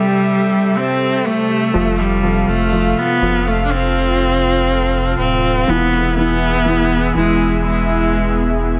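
Lightly reverberant studio ambience frames this short, longing pop passage, where a clear, focused bowed cello with vibrato carries the melody up front over a soft felt-muted upright piano with audible action noise in the background and an airy, breathy pad thickened by chorus, while a deep, saturated sub bass enters at 1.7 s beneath chords moving from C6 to F to E.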